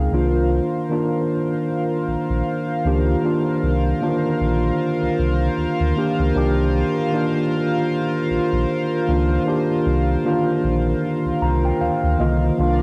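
A mellow tine electric piano carries the accompaniment in this slow, late-night R&B fragment in C minor at 77 BPM, its clean, direct tone resting on a Cm11 chord with a gentle sixteenth-note swing, and it adds a fill from 11.0 to 12.6 seconds. Beneath it, a deep, full sine sub bass with an octave holds the low end, while a shimmering, retro pulse-width pad with chorus sustains bright chords with a soft attack and long release. The whole cut carries a longing mood, with light reverb and the intimate character of a home cassette recording.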